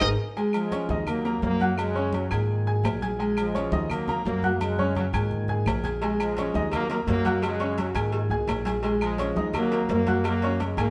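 A straight four-beat salsa groove drives this fiery cut from a longer piece, opening on a drum fill and band accent as ringing, dry timbales and agogo bells, woody claves and a thumpy, dark, pizzicato gut-string upright bass set off beside a clear, short-sustain upright piano, with bright, thin-skinned congas entering at 0.4 seconds, a punchy, tight trombone section carrying the melody up front from 0.5 seconds, and a high-tuned vintage cowbell returning at 6.0 seconds, all played live in a stone room over a cycling chord progression.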